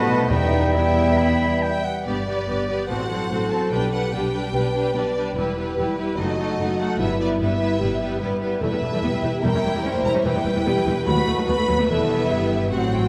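Set in a wet scoring-stage reverb, this stormy, urgent classical passage, cut from a longer piece, opens with a brief flurry of airy flute, oboe, clarinet and mellow bassoon, touched by a very quiet, dry timpani hit, with these parts gone by 2.1 s. Lush bowed violins with vibrato carry the expressive melody and a focused second line through to 13.1 s, while intense, clear violas accompany, a loose French horn section holds sustained chords, and a ringing fingerpicked harp plays arpeggios in the background. Distant, smooth cellos and woody double basses anchor the bass.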